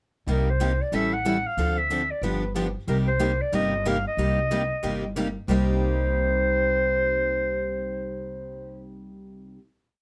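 Swung eighths drive this short, fiery piece of acoustic string swing, where a bright picked concert guitar plays four-to-the-bar rhythm, short and accented on two and four, a parlour guitar adds a second rhythm part in the background, and a woody, thumpy gut-string upright bass plays a two-beat root-and-fifth line up front, while from 0.3 s a breathy, vintage-toned clarinet with light vibrato and subtone sings motif-based song phrases over the changes before the band settles on a final chord at 5.5 s, all set in light reverb.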